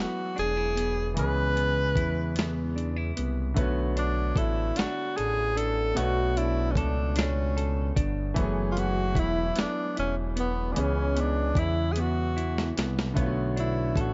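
A breathy, scooped-note tenor saxophone with tape echo carries a sultry, yearning melody over a slow six-eight R&B groove at 50 BPM in B dorian, alongside a dark, clean semi-hollow electric guitar on a second line, a clear concert grand piano with long sustain, a smooth gliding synth bass, and a gritty, dusty soul sampler-style drum kit entering at 0.4 seconds, with a break at 2.4 seconds and a drum fill at 12.0 seconds in this cut from a longer piece.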